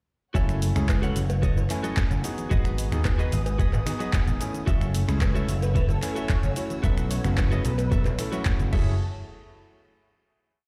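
Sensual and groovy, this short nu-disco piece at 111 BPM in F# dorian rides an overdriven, thumpy four-on-the-floor kick and a punchy, up-front vintage slap bass with tube saturation and sidechain pumping, joined by a house drum kit of cabasa, hi-hat, handclaps, finger snaps and crash, plus a cowbell in the background. A bright, clangy electric grand piano with 12-bit sampler grit and dub echo plays syncopated rootless chord stabs over F#m7, G#m7 and B7sus4, while a clean electric guitar with lush chorus picks a funk chord riff, a very quiet unison pluck runs a 16-step arpeggio, and a dark, distant chamber string section sustains a pumping pad. At 5.6 seconds a thick, detuned sawtooth unison lead with ensemble chorus and digital delay adds short melodic phrases before the groove drops out for a final hit at 9.0 seconds.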